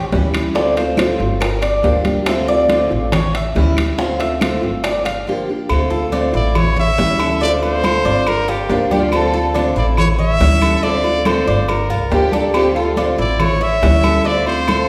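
A Cuban tres opens this nostalgic Cuban son and guajira cut in D minor, its picked double strings sounding metallic and warm as it spins arpeggios over a steady 140 BPM in 4/4. Underneath, a woody, thumpy pizzicato upright bass sits up front, while a bright, picked steel-string acoustic guitar fills in the accompaniment and a circling progression of Dm7, Gm7 and A7 chords drives the harmony. The percussion is layered: round, low-tuned bongos and cowbell and soft-handed congas with a thin skin in the background, ringing metal-shell timbales and agogo bells close and dry, and very quiet, woody claves. At 6.4 seconds a punchy, close-miked trumpet with light vibrato takes the melody up front, and from 8.9 to 13.1 seconds a dark, bowed studio violin section adds a smooth, intimate second line with a soft attack. The excerpt sits in the lush reverb of a recital hall, giving it the spacious feel of a church or concert hall performance.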